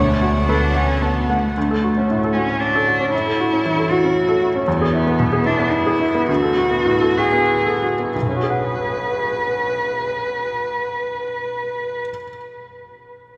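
Neoclassical piano and strings in B dorian, this short passage cut from a longer piece moves in a rubato 3/4 between 89 and 118 BPM, carrying a longing, fragile mood. A bright baby grand piano plays the accompaniment throughout, up front and intimate, its worn, brilliant tone marked by audible action noise and short sustain. A bowed cello carries a second line from the start to 12.0 seconds, smooth and even with vibrato, sounding at once up front and distant. For only the opening 1.6 seconds, a studio string section holds sustained chords in the background while a focused, close double bass bows a low D beneath them. The harmony passes from Bm7/D through Dmaj7, A6 and E before returning to Bm7/D, with the tempo slowing from 3.9 to 8.1 seconds and settling on Bsus2. A cathedral-like reverb with a long 7.2-second decay wraps the ensemble in the resonance of a church or concert hall, and the tuning sits slightly low at A4 = 435 Hz.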